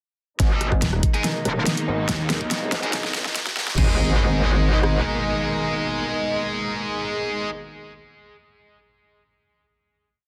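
Through a dense, heavily limited master with light digital ambience comes a short, chaotic and menacing piece of heavy wobble dubstep at 142 BPM in a half-time feel, in G# minor. Over a G#madd9 chord, a metallic, chorused wobble bass with changing wobble speed and a snarling, detuned saw bass answering it drive a build with a drum fill. Meanwhile two overdriven electronic drum kits supply a knocking kick, a huge snare, hi-hat, rim clicks and crash, and a smooth bowed string section pumps beneath a filter sweep. Sparse, echoing high-gain guitar stabs in power voicings enter at 1.1 s, a very quiet riser and impact arrive at 2.5 s, and strings and guitar carry the final chord from 3.8 s.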